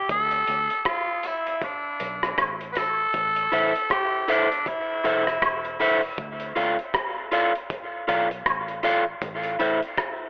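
A growling tenor saxophone leads this spacious, heavy dub reggae excerpt, its raspy, edgy tone carrying a light vibrato up front and trailing dub echo until it drops out at 5.8 seconds. Underneath, a cloth-damped, thuddy drum kit plays hi-hat, a tight kick and rim clicks at 79 BPM with a swung sixteenth feel, sounding muffled and saturated, as if from a small room, its echo repeats adding to the weight. A vintage muted fingered electric bass sits dark and round beneath it, while tambourine and woodblock, joined by egg shaker and group handclaps, ring distantly in a large room, filtered and echoed in the background. From 3.5 seconds an electric guitar at the edge of break-up comes forward with picked, slightly broken-up playing through dub echo, over a harmony moving from A minor to D minor and back to A minor. The echo-heavy mix has a telephone quality, a moderate spring reverb and a faint mains hum underneath.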